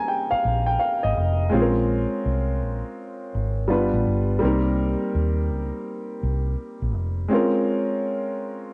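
R&B with a neo-soul lean, this brief cut from a longer piece moves at an unhurried 83 BPM in 4/4, its sixteenth notes carrying a gentle swing that sets an introspective, smooth mood. A woody, natural-sounding upright piano sits up front as accompaniment, opening with a fill over the first 1.5 seconds and carrying on through the passage. Entering at 0.3 seconds, a vintage fingered electric bass, amped and foam-muted with a round tone, adds a dark, punchy low end, also placed up front, before stopping at 7.3 seconds. The harmony moves from Cm7 through Bbm9 and G7, returns to Cm7 and settles on Bbm9 near the close. Light reverb and the dulled top end of a cassette home recording lend the sound a lived-in, intimate character.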